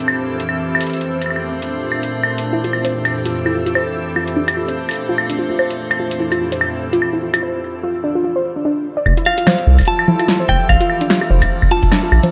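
A punchy, up-front analog drum machine of congas, hi-hat, woodblock and snare with metallic hats drives this wistful, playful IDM fragment in F major at 147 BPM with a 16th-note swing, under an icy, crystalline glass pad with sidechain pumping and shimmer reverb, plus a bubbling, resonant stepped-filter texture in the background. A warbling, lo-fi pluck plays arpeggios from 2.5 seconds through chorus and tape echo, and after a break at 7.4 seconds the second section opens at 9.1 seconds with a deep electronic kick and a round, tube-saturated analog bass, joined moments later by a clean, picked electric guitar melody with tape echo. The chords move between Fmaj9 and Bbmaj9 with a brief turn to Dm, all set in a lush hall reverb.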